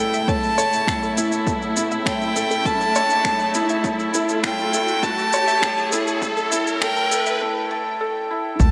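A straight 4/4 pulse at 101 BPM from a punchy, overdriven electronic kick and layered shaker and finger snaps carries this cinematic, moving piano-and-strings electronica excerpt over an A chord, where a clear, close solo violin sings the melody with vibrato above a soft, felt-muted upright piano riff with audible action noise and delay, dark chamber strings hold sustained chords in the background, a very quiet detuned analog pluck plays arpeggios, a background riser runs from 1.2 to 7.4 s into a brief break, and a round, deep analog bass with sidechain pumping arrives only at 8.6 s, the whole set inside a huge ambient reverb.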